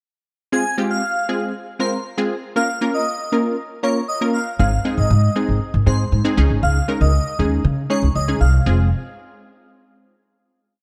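A straight 4/4 dance-pop pulse at 118 BPM drives this short, confident yet bittersweet piece in F minor, where a punchy, detuned sawtooth polysynth with a chorused filter pluck plays syncopated, close-voiced chords up front from the start while an airy, dreamy lead with chorus, digital delay and vibrato repeats a soft instrumental hook above it. At 4.6 seconds a woody, growly pizzicato upright bass joins with a syncopated line that moves through the Ab and Dbsus2 changes. The verse resolves onto a final Fm chord at 8.7 seconds, all set in a dark production with light reverb and small-room ambience.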